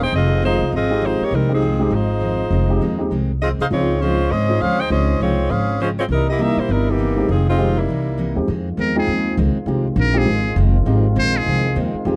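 A clear saxophone section with a soft attack carries the melody up front in this sultry, brassy swing jazz piece, cut from a longer performance. Beneath it, a woody pizzicato upright bass sits forward in the mix, while a bright, full-bodied picked steel-string acoustic guitar adds accompaniment in the background, its finger squeak audible. A grand piano joins at 0.9 seconds with a warm, present tone and long sustain. The saxophones stop at 8.4 seconds, and at 8.8 seconds a trumpet with a metal mute takes a short solo, buzzy and thin with light vibrato, over sustained chords from a dusky, vintage trombone section. The dry, close 1970s-style studio sound moves through minor seventh and altered dominant harmony.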